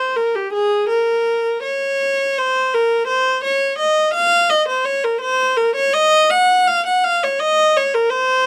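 Classical, baroque-style suite movement for unaccompanied viola in a grave, solemn 3/4 with a free rubato feel, where a single bowed viola plays alone for the full 8.5 seconds of this fragment of a longer piece, its clear, smooth and even tone carrying vibrato up front, captured by close, detailed microphones with a light touch of reverb.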